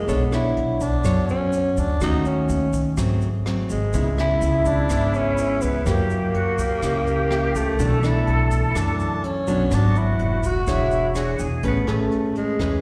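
A growling tenor saxophone carries the melody up front in this sophisticated, romantic bossa nova fragment at 125 BPM, its breathy subtone, raspy grit, scooped notes and vibrato touched by a slapback echo, and from 11.6 seconds it takes a short solo as the harmony lands on Amaj9. Beneath it, a fingerpicked nylon-string guitar in classical style supplies warm accompaniment through rich jazz changes such as Bm9, G#7b9 and E13, also carrying a slapback echo. A woody pizzicato upright bass anchors the low end, while a brushed drum kit with a boomy kick, hi-hat and rim clicks sits airy and polished in the background, joined by a grainy, mellow tube shaker. At 3.9 seconds a distant large flute ensemble enters with a pure, vibrato-laden second line and crisp attacks. The whole performance is heard as a live gig through the venue's sound system, with moderate club reverb and the resonance of a recital hall.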